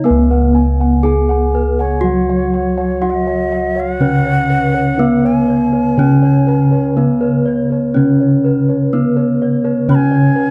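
In a straight, slow 4/4 at 61 BPM, this serene, shimmering fragment of a Javanese gamelan piece in C# slendro sets an up-front, ringing bronze metallophone melody struck with a wooden mallet over a mellow, soft metallophone accompaniment played with padded disc mallets, round, beating bossed gongs in the bass, and dark, smooth arpeggios from a background metallophone and a second set of bossed gongs, while a bright bamboo bansuri with vibrato and a crisp attack enters at 1.8 seconds to carry an airy second line, all captured in a dry, close 1970s-style studio sound.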